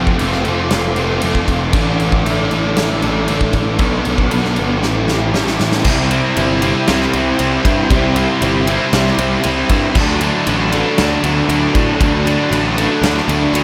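Concert-hall reverb folds a small-room ambience into this hazy, dreamy shoegaze and dream pop excerpt, giving the rock band a big, washed sound in a straight 4/4. A huge arena drum kit, acoustic and natural with a punchy kick and medium-tuned snare, works through crash, ride, kick and snare from 0.1 seconds, with a fill from 4.8 to 5.9 seconds leading into the second section. Up front, an overdriven electric guitar drenched in lush chorus plays a riff, while a crunchy overdriven guitar riffs in the background through reverse reverb, joined at 5.9 seconds by a second, double-tracked crunchy guitar riff. A bright, fuzz-laden picked electric bass sits forward in the mix, its overdriven tone direct and amped. Beneath it all, a very quiet twelve-string acoustic guitar shimmers with octave-doubled arpeggios and finger squeak, and a hollow, flute-like vintage pad warbles through sustained, detuned chords with a slow attack and lush chorus. 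The harmony moves from F6 through Asus4, Bm7 and A7sus4 before settling on Cmaj7 and D6.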